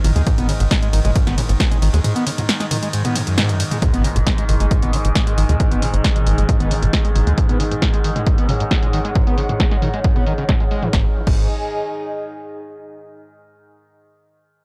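A screaming, squelchy distorted acid line, a tight, dark sequencer bass, a nasal overtone-sweeping drone and a layered, tape-tinged techno kit with a punchy snare open this relentless, driving peak-time techno piece at 135 BPM, with a punchy analog kick landing up front at 0.3 seconds, a very quiet electronic impact hitting at 4.0 seconds, a warbly, nostalgic lo-fi pad drifting in at 4.4 seconds, and a filter sweep reshaping the drums, in a dry, gritty hardware sound.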